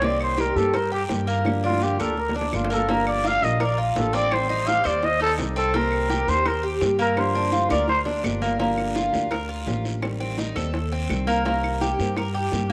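Cuban son and guajira with a nostalgic, danceable lilt, led up front by a gritty, growling trumpet solo with vibrato and scooped notes that plays until 8.0 seconds, over a metallic, picked tres in slapback echo, a boxy fingerpicked nylon-string guitar, a thumpy gut-string upright bass, round low-tuned bongos with drum fills, woody claves and a raspy guiro kept close and dry, the mix set in moderate plate reverb, in a short cut from a longer piece.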